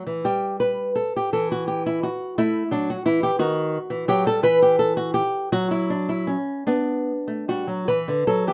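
In a rubato 6/8 lilt of roughly 50-59 dotted-quarter beats per minute, this short excerpt from a longer baroque-style classical dance unfolds in a solemn, flowing mood. The harmony passes through Em11 and D#dim before settling into B minor from 4.4 seconds and arriving on Bm at 6.7 seconds. A lone fingerpicked nylon-string guitar carries it all, sitting up front with a warm, small acoustic tone, audible finger squeak and a moderate studio reverb.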